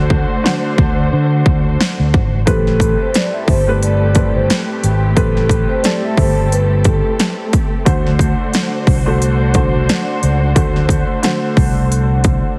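A heavily compressed, radio-like sound wraps this short boom-bap hip-hop excerpt, with vinyl crackle and studio reverb lending it a reflective, moody air at 89 BPM in 4/4 with a 16th-note swing. A dark, woody upright piano with audible action noise and a slightly detuned, worn character carries the accompaniment through a cassette-tape haze, while a muted, con sordino string section holds veiled sustained chords behind it. Up front, a round, amped fingered electric bass sits alongside an electronic, layered drum kit with a punchy, overdriven kick and snare and crisp hi-hats. After an opening break over D7, a vibraphone played with soft mallets enters at 2.5 seconds on Am9, its metallic, ringing tone and slow motor vibrato trailing tape echo until 7.2 seconds. The harmony returns to D7 at 7.9 seconds as the groove carries on to the cut.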